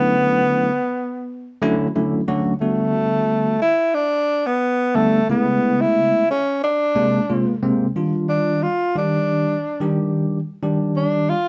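A band playing live in one room is caught in a moderate studio reverb, with a breathy tenor saxophone and a bell-like tine electric piano both set up front in this short cut from a longer jazz piece. At 90 BPM in 4/4 with a light sixteenth-note swing, the clean, direct electric piano carries the accompaniment through suspended thirteenth chords and an A#9 chord before the music settles into Eb major at 8.0 seconds. The mellow saxophone sings the melody with light vibrato, scooped notes and a smooth top, then takes a slick, soaring solo from 8.0 seconds to the close at 11.5 seconds.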